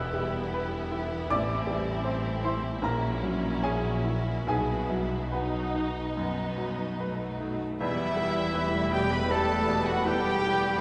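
A bright, brilliant baby grand piano leads this passionate, tragic romantic excerpt in E minor, its short-sustained melody sitting up front at a rubato 69-82 BPM over a lush string body: violins carrying the tune and a second line with smooth vibrato, violas filling the accompaniment, and cellos and an intense, distant double bass section holding the bass. The harmony moves from Em through Am7 and F#7/A# to B. At 7.8 seconds, as Em returns, a distant, roomy oboe, a hollow, airy flute group and a very quiet bassoon join alongside dark, soft-attacked French horns and faint vintage-toned trombones, with a solo clarinet adding a second line from 9.3 seconds, all bathed in a long church reverb.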